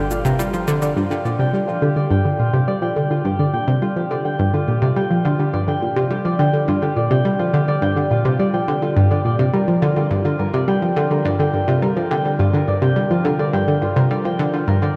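A bright, detuned analog pluck riff with chorus and delay and ringing, thumb-plucked concert harp arpeggios with delay open this hypnotic, expansive excerpt of sequencer-driven ambient space music at 105 BPM in G minor on a Gm7 chord, while a deep sine sub bass and a tape-warm electronic cabasa with delay sound only until 0.9 s, keeping pluck and harp up front in a dreamy mix soaked in huge reverb.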